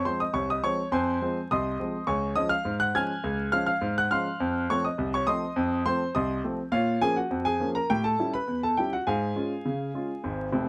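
Ragtime piano in Db major at 103 BPM in a straight 2/4, cheerful and jaunty, played by a solo grand piano with a warm, present tone, long sustain and an up-front place in the mix, ranging from F1 to Ab6. The short passage moves through Fm, Db, F7, Bbm and A7 before settling on Db/Ab, with a piano fill at 10.5 seconds just before this cut from a longer piece ends. Close, detailed microphones and light reverb capture the playing, and vinyl crackle adds an aged surface.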